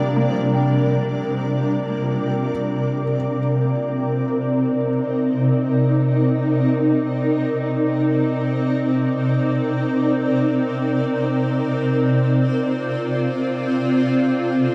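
A blurred, evolving granular cloud pad sits up front with sustained chords in this serene, melancholic free-time ambient fragment in C minor, while a soft, felt-muted upright piano with audible action noise and tape echo plays arpeggios in the background until 3.4 seconds, the pair set in a huge, drenched reverb as the harmony moves from Gm/C to Cm7 at 2.5 seconds and to Dm7/C at 11.7 seconds.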